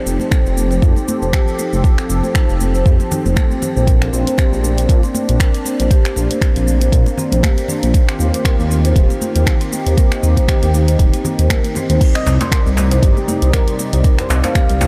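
A 118 BPM afro house groove in 4/4 drives this excerpt, swung at 55% on the sixteenths, with a deep, layered electronic kick sitting up front beside a deep house kit of cabasa, crash cymbal, finger snaps and hi-hat, while bright, dry congas played with hard hands tick along in the background. Underneath, a dark detuned saw bass rumbles and beats with a saturated, sustained tone, pumping against the kick as it holds the low end. A smooth analog pad with soft attack and long release carries sustained chords through F7, Bbadd9, Ebadd9 and Cm, breathing with sidechain pumping and chorus. Woody marimba arpeggios on rosewood bars weave through the middle, shaded by a low-pass filter sweep and echoing analog delay. At 12.0 s a medium-tuned djembe joins, and at 12.2 s an expressive, mellow synth lead with vibrato and chorus enters over the track, giving this earthy, warm passage a singing melodic lift set in light digital ambience.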